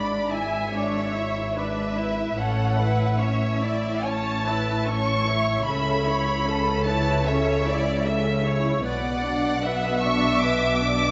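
Up front, a violin section sings the melody with an expressive, lush tone, soft attack and rich vibrato, while a clear second violin line and a smooth, even viola accompaniment sit farther back. Focused cellos and a distant, lightly vibrating double bass section anchor the harmony beneath, moving from E7/G# through A and A/C# to Bm across this 11.1-second fragment of a slow, rubato romantic movement for string orchestra. The mood is serene, and a wet recital-hall reverb surrounds the strings with a dark, rolled-off top end.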